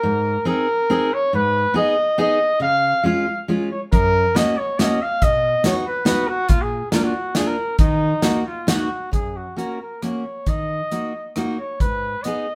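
Bouncy and jolly, this short cut from a longer alpine folk dance-band piece moves in a lilting three-beat metre with a loose, rubato feel. A clear flugelhorn carries the melody up front, its classical-style solo voice colored by light vibrato and a roomy, distant tone. Beneath it, a fingerpicked jumbo steel-string acoustic guitar provides a woody, full-bodied accompaniment, its old strings giving the sound a warm character. A natural country drum kit joins at 3.9 seconds with a punchy kick, a medium-tuned snare, hi-hat and rim clicks, all sounding as if captured in a small room. The band plays live together under moderate studio reverb, and at 9.1 seconds the harmony shifts into a new, brighter section that runs to the end at 12.6 seconds.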